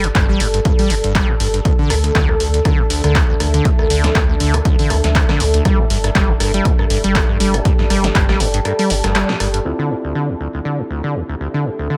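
A driving, trippy acid house cut in D minor at 120 BPM with a swung 16th feel opens on a smooth, detuned sawtooth pad holding sustained chords, while a moody ambient pad fades in behind it and both breathe with sidechain pumping. A squelchy, resonant acid bass riff with a filter sweep, overdrive and delay sits up front over a thick, tube-saturated sub bass and a punchy drum machine of handclaps, hi-hat, rim click and snare, joined by an up-front electronic kick that stops at 8.3 seconds. A band accent lands at 9.2 seconds, and from 9.7 seconds a worn, slightly out-of-tune electric piano adds lightly overdriven, filtered stabs on a Dm7 chord as the drums and sub drop away.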